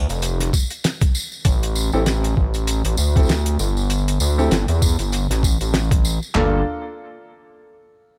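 A funky, gritty glitch hop fragment opens with a nasal, saturated synth bass under a filter sweep, quickly joined by a dry 70s drum kit with a fat snare and tambourine and then an overdriven, up-front sampler-style boom bap kit with a thumpy kick and high-tuned snare, all in a swung groove, before smooth vintage grand piano stabs, pumping and delayed through a low-pass filter, enter at 1.9 seconds over an A7 chord with its third omitted that moves to Gm7 at 6.3 seconds.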